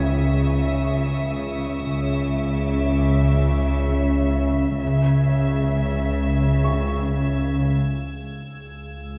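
A dark, close-miked scoring-stage sound frames this ominous, eerie cinematic fragment in free time and C# minor, where a floating sul tasto violin section carries the melody over warm, sul tasto cello and double bass sections on a C# minor chord until 7.7 s, while an organ-like sine drone with ensemble chorus, a boxy felt-muted upright piano with audible action noise, and high violins add a faint background texture that lingers on through 9.2 s.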